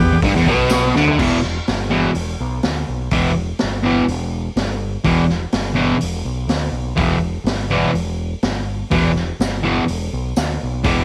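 Garage rock with a swaggering, raw attitude, this excerpt is driven by a bright, double-tracked fuzz guitar riff up front, backed by a growling fingered electric bass with overdrive and tube saturation. A gritty, saturated drum kit with a boomy kick and rolled-off top enters at 0.2 seconds and hits a fill at 0.9 seconds, while a jingly tambourine sits in the background and returns near 9.4 seconds. Small room ambience gives the recording a close, unpolished feel.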